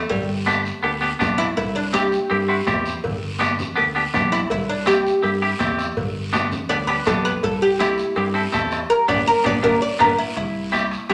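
A straight 4/4 cumbia groove at 164 BPM in G major sets a joyful, festive mood, with a bright, woody oud playing a plectrum-plucked solo up front over a round fingered electric bass, a clean compressed semi-hollow guitar entering at 0.5 seconds, raspy guiro, ringing high-tuned congas, cowbell and timbales and a distant soft-beater bombo, all alternating between G and C in a wet studio reverb until a drum fill and band accent arrive at 8.9 seconds in this excerpt cut from a longer piece.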